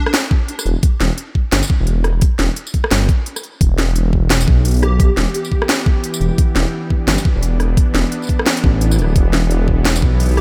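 Dark and tense, this half-time drum and bass excerpt moves at 173 BPM in E minor with a swung 16th feel, built on a knocking electronic kick and an up-front kit of cracking snare, crisp hats, rim click and tambourine, all re-recorded in a small room. A deep, rumbling detuned saw bass enters at 0.7 seconds and drives underneath, while a warbling, string-like drone with vintage 12-bit grit, sidechain pumping and its own reverb arrives at 4.7 seconds to hold sustained chords. A punchy, bright square-wave lead with chorus and diffuse ambient delay appears only in brief catchy flashes, at the very start, around 4.8 seconds and again at the close, sitting quietly behind the weight of the low end.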